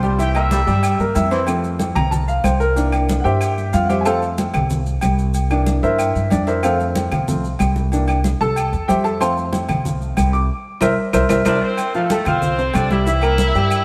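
Salsa in F major at a brisk 186 BPM, this joyful, danceable fragment of a longer piece alternates between C7 and F as a clear concert grand piano, up front with deep bass and short sustain, carries the accompaniment and takes a solo from 1.5 to 11.8 seconds. An upright bass, woody and thumpy with steel strings, is plucked close beneath it, while compressed, saturated congas with a thick skin and hard hands drive the groove. Ringing metal-shell agogo bells and timbales join at 0.2 seconds, woody claves sit in the background, and grainy, mellow maracas stay close and dry. A bright, punchy trumpet section with vintage vibrato states the melody at the opening and returns at 11.5 seconds, and a breathy, distant baritone saxophone adds a brief second line near the start. A band accent and drum fill lead out of the piano solo, and a moderate plate reverb places the ensemble further back in the room.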